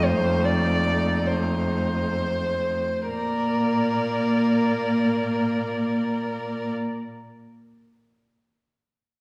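In free time, the music opens with a slowing of pace over the first 3.1 seconds before settling into a second passage, as an F7 chord gives way to Bb. This is a lyrical, warm slow romantic movement for string quartet, cut from a longer piece, with all four players bowing with mutes on, giving the ensemble a dark, veiled color. The melody sits in a muted violin that sounds distant and rather faint, while the second violin's line and the cello's bass stand up front, both with vibrato. The muted viola fills in the accompaniment with light vibrato, a soft attack and a smooth top. All four parts play together from the start and stop at 6.7 seconds, leaving the reverberant recital hall, heard from further back in the room, to carry the sound on.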